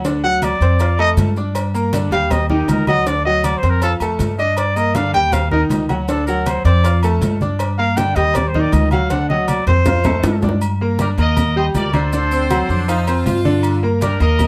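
A danceable, passionate salsa excerpt opens on a brilliant, worn concert grand piano with audible action noise, a woody, thumpy upright bass up front, and background congas, tight high-tuned cowbell and bongos and grainy maracas, soon joined by ringing timbales and agogo bells as a roomy trumpet with light vibrato and scooped notes solos through a drum fill at 9.1 seconds, after which a punchy, vintage trumpet section enters at 11.0 seconds and a close-miked saxophone section adds a second line from 12.3 seconds, all set in light reverb.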